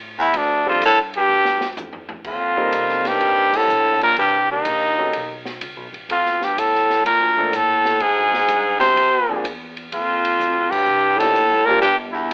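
Small-group swing and bop jazz at 125 BPM in 4/4, with a playful, swinging eighth-note feel, this brief excerpt from a longer piece passes through a filtered, telephone-like sound inside a moderate studio reverb. A clear, punchy trumpet carries the melody up front with light vibrato and forceful jazz phrasing, while a raspy, growling baritone saxophone traces a second line beneath it. An upright bass, played pizzicato with a woody, thumpy tone, sits in the background, and a baby grand piano adds intimate accompaniment with audible action noise and long sustain from 0.7 seconds. The acoustic drum kit, heard in a small room with dark cymbals, a high-tuned snare and a boomy kick, plays a fill from 1.3 to 2.3 seconds that leads into the second section. The band hits a shared accent at 3.5 seconds and again at 10.6, as the harmony moves from F69 through Cm7 and Bbmaj7 to Ebmaj9 before the chords drop out at 11.8 seconds.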